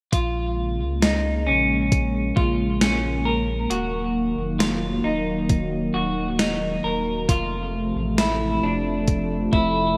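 Ethereal and melancholic, this short dream pop excerpt drifts through Bbm7, Ebm and F as a hollow-body electric guitar, up front and clean, picks arpeggios through lush chorus and delay over a smooth, detuned sawtooth pad, a deep, round sine sub bass and a gated 80s digital drum machine with a thumpy kick and gated reverb snare that stops at 9.7 s, all set in a lush hall with bright 1980s-style digital sheen.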